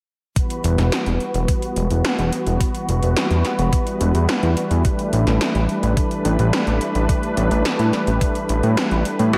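Synthwave with a nocturnal, moody feel, built on a smooth, detuned sawtooth pad holding sustained chords through a chorus effect, moving from Emadd9 to A7sus4 at 4.8 seconds. A thumpy, sampler-style electronic kick and 80s electronic drums with a gated snare and metallic hi-hats set a straight 4/4 pulse under a fat, saturated analog bass with a fast-attack filter pluck. At 9.3 seconds a bright, clangy electric grand piano cuts in with a brief stab just as the passage is cut off.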